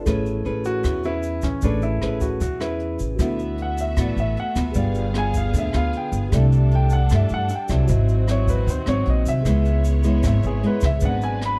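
A straight, even bossa nova rhythm in 4/4 runs through this short excerpt, carried by a jazz kit played with brushes on hi-hat, rim click and a boomy kick, plus a grainy, bright tube shaker sitting low in the mix. Beneath it, the upright bass stands up front with a woody, thumpy pizzicato tone from gut strings, while a fingerpicked nylon-string guitar adds classical accompaniment, its finger squeaks audible. A mellow, clean tine electric piano stays in the background. The concert grand piano enters at 0.7 seconds with a natural, deep-bottomed melody and takes a solo from 3.2 seconds, when a lush, distant string section arrives with smooth, vibrato-laden sustained chords. The harmony moves through colorful extended chords such as Amaj9, D69 and C#m7, and the dry, dark production lends the piece a romantic, sophisticated mood.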